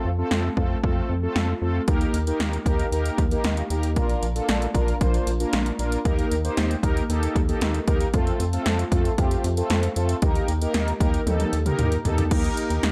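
A punchy, overdriven analog drum machine sits up front with kick, snare, hi-hat, toms, crash and a fill at 11.3 seconds, while round, detuned synth brass shimmering with chorus and phaser and a rubbery, hollow square-wave bass fill out this wistful, nostalgic synth-pop fragment, captured as a dry, gritty hardware recording in a digital ambience.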